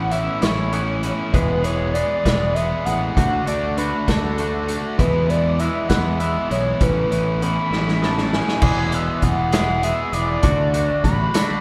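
A screaming, gritty synth lead carries the melody across this short cut from a longer indie rock piece, its sawtooth and pulse-wave tone roughened by ring modulation, saturation, chorus and vibrato so that it sounds almost guitar-like. Beneath it, a bright overdriven electric guitar and a clean, compressed, twangy electric guitar each play a picked riff, while a growling fingered bass adds overdriven weight in the low register. A vintage acoustic drum kit sits up front with a punchy kick, a medium-tuned snare and dark cymbals, its rolled-off top giving it a warm character in a small, pumping room. The mood is carefree and upbeat in a straight 6/8 metre, moving through Aadd9, E and D chords. A drum fill at 7.7 seconds leads into a new section at 8.6 seconds. The whole band is set in a moderate concert-hall reverb that lends the recording a church-like sense of space.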